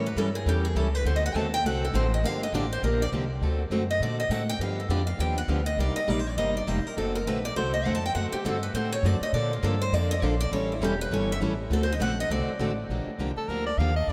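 A fast, swung four-beat pulse drives this bittersweet, virtuosic slice of acoustic string swing in the jazz manouche style, cut from a longer piece. A boxy, parlour-toned picked steel-string guitar sits up front and carries the melody as a solo until about 12.8 seconds. Two more picked steel-string guitars supply the accompaniment, one with fresh strings and audible finger squeak, the other very quiet and mellow. Underneath, an upright bass played pizzicato on gut strings gives a woody, thumpy low end. Near the close, at 13.4 seconds, a soprano saxophone slips in up front for a short jazz solo, its line shaded with vibrato and scooped notes. The whole recording is bathed in a long cathedral reverb, as if played in a vast, echoing space.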